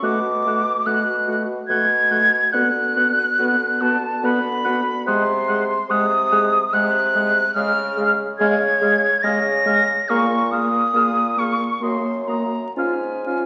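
A bright, airy silver flute sings the melody up front with vibrato and a soft attack in this lyrical, tender slow romantic movement for wind quintet at 71 BPM in a rubato 3/4. A vintage-toned oboe plays the second line in the background, a close-miked mellow French horn and a clarinet supply accompaniment, and a distant, roomy bassoon carries the bass. The harmony settles into Db major from 5.1 s, all heard in a wet recital hall through the crackle of a very old 78 rpm record, cut from a longer piece.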